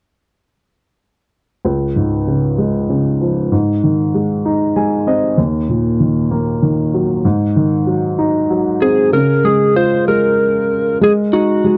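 Romantic and heartfelt, this brief fragment of a six-eight pop ballad opens with a warm, natural baby grand piano carrying the chords up front and adding a fill at 4.5 seconds, before a slightly broken-up, compressed electric slide guitar with tape echo takes up the melody at 8.8 seconds, set in a dry, close 1970s-style studio sound with light reverb.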